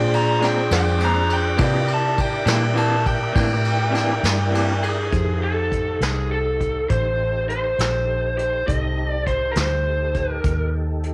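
A lead guitar through a small cranked amp leads this slow, rollicking blues excerpt, taking an overdriven, lo-fi picked solo that sits up front over a 12/8 groove at 68 BPM in F mixolydian. Beneath it, a dark, foam-muted fingered electric bass gives a round, punchy low end, and a brush drum kit with a punchy kick, medium-tuned snare, hi-hat and ride adds a rolled-off, small-room feel. A tonewheel organ holds sustained chords in the background, clear and lightly overdriven with key click, chorus vibrato and a slow rotary speaker. A barky, gritty tine electric piano comps behind it through a combo amp. A second electric guitar through a small old amp plays compressed, slightly broken-up accompaniment with tremolo from 0.4 to 4.7 seconds, while the harmony moves through Bb9 and C9 before settling on F9 at 5.1 seconds, all set in light reverb and a modest room ambience.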